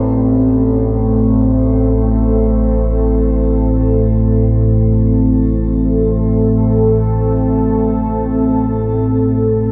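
A deep, moody pad of detuned sawtooth voices with a sine sub octave holds a single Amadd9 chord, swelling in slowly and ringing on with shimmer reverb and chorus across this 9.7-second excerpt from a longer ambient piece in A minor. Beneath it, a nasal analog drone built from sawtooth and pulse waves, with pulse-width modulation and a moving notch, sustains low notes between A1 and A2. The piece is ominous and dark, floating in free time inside a cathedral reverb.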